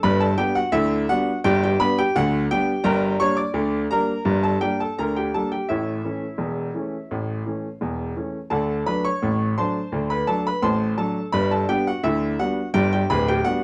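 A clear, up-front baby grand piano plays lively, jaunty solo ragtime in a straight 2/4, tuned a touch below standard pitch, spanning D1 to D6 as it moves from G through Gm, A, D and D7 back to G at 11.3 seconds, set in a dark production with moderate studio reverb in this short cut from a longer piece.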